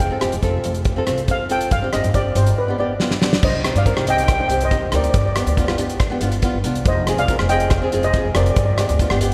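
Calypso with a dramatic, driving feel, cut from a longer piece, where a mellow, shimmering steel pan carries the melody over fingerpicked flamenco guitar, woody pizzicato upright bass and an up-front soul drum kit with dark cymbals and a tight kick. The pan takes a solo through the opening 3.4 seconds, capped by a drum fill from 3.0 seconds, before the harmony settles into C minor territory. Everything sits in a cavernous cathedral reverb that gives the church-recorded performance a long, haunting tail.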